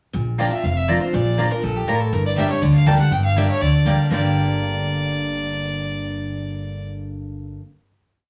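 Over a fast straight 4/4 at 241 BPM, an upright bass thumps a woody two-beat root-and-fifth line with walk-ups while a bright, full-bodied picked acoustic guitar sits up front with alternating bass and strum and bass runs, a mandolin chops on the off-beats, and a clear, airy-bowed fiddle with slapback echo races through a fiddle tune in running eighth notes from 0.4 to 6.9 seconds, giving this short, rustic, driving G minor bluegrass piece a small-room feel as it moves from Bb to Gm and closes on a final chord.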